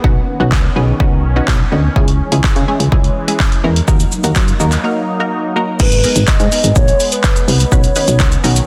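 A dense, heavily limited modern mix with light reverb carries this energetic, bittersweet dance-pop excerpt, driven from the start by an up-front analog drum machine with a punchy kick, handclaps, hi-hat, shaker and crash, plus a round FM bass with a fast attack. Detuned sawtooth chord stabs with a filter pluck, chorus and phaser pump in time alongside an evolving, resonant pad that swells in slowly beneath the chords with a long release. At 5.8 seconds a hollow, woody clarinet-like synth lead enters with vibrato, chorus and dub echo, playing a mellow melody over the changing harmony until 8.6 seconds.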